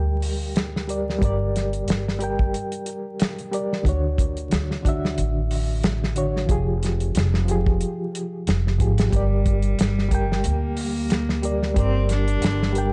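Trip hop at 91 BPM in G phrygian with a lightly swung sixteenth feel, hypnotic and smoky over a dark production with vinyl crackle, light reverb and small room ambience. A reedy, slightly out-of-tune electric piano with fast and harmonic tremolo and tape echo carries the chords from Gm through Dmaj7 and Fmadd9, while a woody, growly pizzicato upright bass with tube saturation and an up-front soul drum kit with a tight kick and a medium-tuned snare hold the groove from the outset. At 9.2 seconds a rich, bowed cello with light vibrato and gut-string tone enters with the melody, touched by tape echo, in this excerpt cut from a longer piece.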